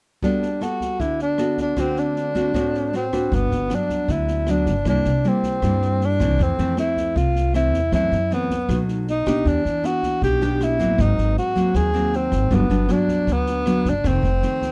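A dry, close 1970s-style studio sound frames this relaxed, romantic bossa nova at 156 BPM in G major, where a breathy, whispered tenor saxophone carries the melody up front with subtone, vibrato and scooped notes over full-bodied fingerpicked nylon-string guitar with audible finger squeak, a natural small-room jazz kit of boomy kick, rim click and medium-tuned snare, and a woody, thumpy pizzicato upright bass on gut strings that joins at 3.3 seconds as the music moves through lush chords like Gmaj9, F#m7b5 and Ab9.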